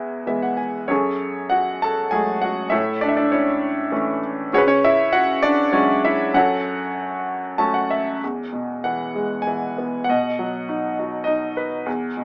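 A short flourish from a bright, worn baby grand piano opens this excerpt from a longer classical piece, a lyrical solo in F# minor set in 3/4 at 99 BPM with a flexible, rubato feel. Sitting up front and intimate, with audible action noise and long sustain, the piano moves through a bittersweet, brooding progression from E and F#madd9 to A, C#sus4 and F#m. Another fill closes that passage before a second section begins at 8.2 s on Eadd9 and settles on B, all framed by light reverb and a small-speaker sound.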